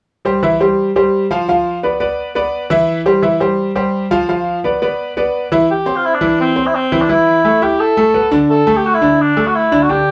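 Latin excerpt in C major at 171 BPM, danceable and joyful, in which a bright, brilliant concert grand piano with a worn edge, deep bass and audible action noise carries the accompaniment from 0.2 s over chords moving between C and Dm69, before a cor anglais with light vibrato and a punchy, classical tone takes the melody at 5.7 s as the harmony passes through Asus2 and D5, the recording set in a small, wet room heard from further back.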